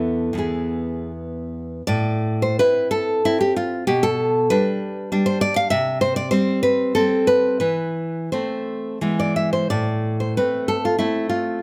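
Intimate and wistful, this short passage, cut from a longer romantic work for solo classical guitar, moves in a flexible, rubato three-beat metre. A single fingerpicked nylon-string guitar carries everything, sitting up front with a warm, acoustic tone and the bright sound of fresh strings. Close, detailed microphones catch each note along with the occasional finger squeak, set in light reverb. The guitar opens on an E chord before a new section begins at 1.9 seconds, where the harmony passes through A minor, G over B and a bare C fifth before returning through A minor over E and E to close on A minor at 9.7 seconds. The playing ranges from low bass notes up into the upper register of the instrument.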